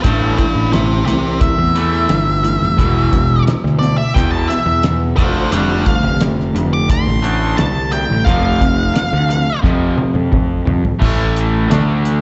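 A steady, straight 4/4 pulse drives this brooding classic rock clip, cut from a longer piece and heard as a live gig through the venue's PA, with recital hall reverb and a dulled top end. A dark, up-front octave-fuzz lead guitar carries a solo melody from the start, distorted and given a slapback echo, until it stops at 9.6 seconds. Beneath it, a raw garage guitar plays a bright, double-tracked, overdriven riff with its own slapback echo, while a fuzz picked electric bass sits punchy and round at the front of the mix. The cloth-damped drum kit sounds thuddy and dry, with a fat snare, tight kick and dark cymbals, and a drum fill runs from 9.6 to 11.0 seconds. The harmony moves through Amadd9, E5, Dm/F and F5 before shifting to A5 and D5 in a short closing section that begins at 11.0 seconds.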